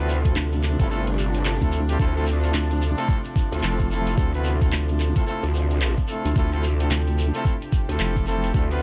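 Swaggering and playful, this short glitch hop excerpt rides a swung sixteenth-note groove over a single Dm9 chord in a dark, close-sounding mix. Two basses sit up front: a growling, saturated growl bass thickened with chorus and overdrive, and a nasal, resonant vowel-sweep wobble bass with its own chorus, entering at 0.4 seconds. A knocking, tape-tinged electronic kick and a layered dubstep kit of handclaps, bright hi-hats and rim clicks arrive at 0.3 seconds, both touched with studio reverb. Brilliant horn stabs with light vibrato and octave doubling carry tape echo and sidechain pumping, while a reedy, gut-string chamber string section holds sustained chords in the background, pumping as well. A grainy, mellow shekere and a very quiet, cloudy granular pad that blurs and evolves fill in the edges of the texture.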